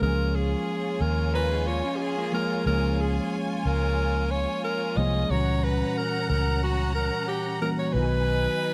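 Lush and warm, this short soul excerpt moves at 91 BPM in Db mixolydian with a light sixteenth-note swing, as a bright, close-miked alto saxophone carries the melody over a smooth, bowed violin section playing a second line. A clean tine electric piano with chorus and a round, foam-muted fingered bass sit underneath, the bass up front, while a dark, slightly broken-up, lo-fi guitar riff appears only from 1.3 to 3.1 seconds. The harmony moves from Db6 to Gb7b9/Db and then to Cb, inside a studio ambience.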